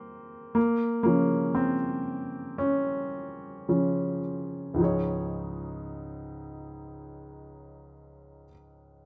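A clear, up-front baby grand piano opens this heartfelt pop fragment in Db major, playing solo and slowing down through the first 4.8 seconds as it moves from Ebsus4 to Dbmaj7, then settling onto Dbadd9 at 4.8 seconds and carrying its emotional accompaniment across Db2 to Db5 at a slow 54-60 BPM in 4/4, set within a moderate stone-room reverb.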